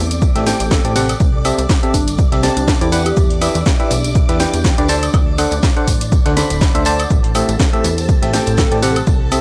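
Over a swung sixteenth-note house groove driven by a punchy, up-front electronic kick drum, a layered house drum kit with a cracking snare, a background tambourine, and a very quiet, gritty breakbeat sampler-style drum kit, this bittersweet, soulful piano house fragment rides a funky plucky analog bass with sidechain pumping and a biting, barking FM electric piano riff entering at 0.4 seconds, all alongside shimmering vintage string machine violins with 12-bit grit, a mellow, ethereal airy pad, and a round, warbling, soft struck synth lead with tape echo that sings from 0.7 to 3.4 seconds and returns briefly from 8.6 to 9.0 seconds, everything captured in a dry, gritty hardware recording.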